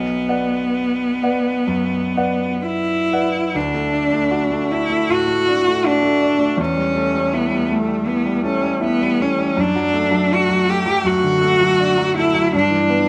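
A bowed cello, rich and focused with vibrato, sings an elegiac melody up front while a clear, natural-sounding grand piano accompanies beneath it, both entering together in this romantic classical fragment. The pulse stretches and relaxes in solemn rubato, and at 3.5 s the harmony turns from its dark opening toward a more consoling second section that carries through to 13.1 s. The close, detailed sound sits within a moderate concert hall reverb.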